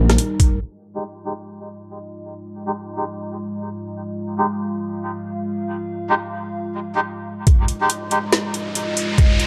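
Cavernous and brooding, this deep dubstep fragment has a swung, half-time feel and rests on a dark analog pad of detuned, ring-modulated chords with a slow attack and chorus, moving from Eb to Fm7 under a filter sweep. A reedy, nasal melodica plays stabs through dub echo from 1.0 seconds. A garage drum kit with a woody snare and metallic hats, paired with a muffled, thumpy electronic kick up front, appears briefly at the start and returns at 7.5 seconds for a build-up, joined by an electronic riser at 8.0 seconds in a warm, low-passed, lightly reverberant production.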